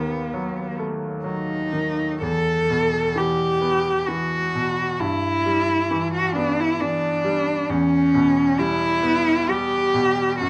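Set in a light reverb, this melancholic, yearning fragment of a Romantic classical duo in a rubato triple metre places a rich, bowed solo cello up front, singing the melody with vibrato, soft attacks and expressive portamento, over a bright concert grand piano whose deep bass and long sustain carry the accompaniment beneath it.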